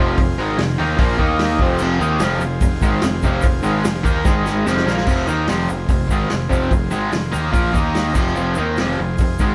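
A bright, overdriven, double-tracked garage guitar riff in F minor opens this menacing, gritty 147 BPM excerpt alongside a round fuzz bass and a very quiet, buzzy combo organ holding sustained chords, with a punchy vintage drum kit joining at 0.2 seconds, a grainy egg shaker slipping into the background at 1.8 seconds, and a drum fill and organ fill marking the shift into the next section at 5.1 seconds, all captured like a band playing live in one room with light reverb.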